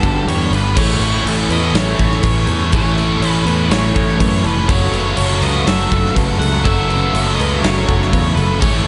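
A huge, up-front arena drum kit with a punchy kick, medium-tuned snare and pumping hall sound drives this blissful, dreamy shoegaze and dream pop excerpt at 122 BPM in A major, with a growly fingered electric bass beneath it and both stopping around 8.7 and 8.9 seconds. A dark octave-fuzz lead guitar carries the melody through slapback echo, while three riff guitars join it: a biting overdriven one washed in reverse reverb and a double-tracked overdriven one with phaser, both sitting in the background, and a very quiet thick fuzz guitar. Clean direct-recorded guitar arpeggios with subtle chorus and a lush, detuned unison pad with chorus glow over chords moving from Gmaj9 to Amaj7 and on to F#m7 at 4.7 seconds.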